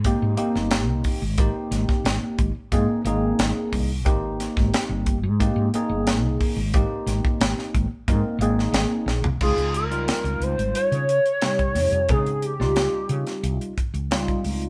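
A straight 4/4 groove at 90 BPM from a tight, dry funk drum kit with a high-tuned snare drives this soaring, bright electric jazz fusion excerpt in Ab major, where a round, dark fretless bass and a bell-like tine electric piano with phaser hold an Abmaj9 chord until a drum fill at 9.1 seconds ushers in a move to Dbmaj9#11 at 9.4 seconds, when a nasal, hollow square-wave lead with chorus, vibrato and portamento sings up front until 13.8 seconds, the band heard playing live together in one room with light reverb.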